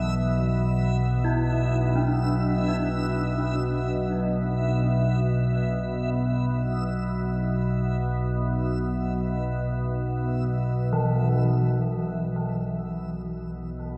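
A cassette-tape haze hangs over this desolate, dark ambient drone, set in a vast, echoing space with a cathedral reverb that lingers for 5.2 seconds. Up front, an organ-like drone holds low and calm, its sine-pure unison voice colored by ensemble chorus, phaser and its own reverb, with a slow attack and long release. Softer, a gamelan-type bronze metallophone traces arpeggios with metallic, ringing strikes from a horn mallet, its paired tuning producing shimmering beats through a delay. Faintest of all, a reversed, detuned, granular texture swells dreamily in a bright high register until it stops at 11.5 seconds. The harmony shifts from Bmadd11 to Bsus4 at 7.6 seconds, and the bleak atmosphere carries through to the close of this fragment of a longer piece.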